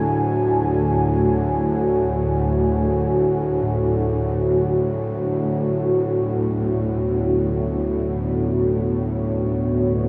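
Drenched in a wet cathedral reverb, this cavernous, ominous dark ambient drone in free time, taken from a longer piece, sets a deep, detuned sawtooth analog pad with a sub octave and chorus, holding chords from F#m to Bm at 5.7 s, up front beside a tense, string-like bowed drone with ring modulation and vibrato, while a ringing, metallic bronze singing bowl with slow beating sounds arpeggios in the background through a diffuse ambient delay.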